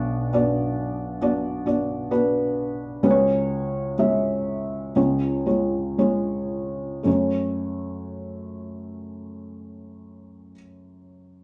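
Heartbroken and full of longing, this short pop fragment rests entirely on a felt-muted upright piano playing accompaniment, reaching from B1 up to E5. The piano sits up front with an intimate, dark tone, its thick felt softening every note into a hushed, muffled glow. The opening passage gradually slows as the harmony moves from Bm through C#sus4 to C#, holding the ache of an unresolved question. At 7.1 seconds a new section settles onto F#m, which feels like a heavy, resigned arrival. A wet studio reverb and the natural sound of a single room surround the instrument, and the tuning sits slightly below standard pitch at A4 = 435 Hz. Cut from a longer piece, the excerpt ends at 11.4 seconds.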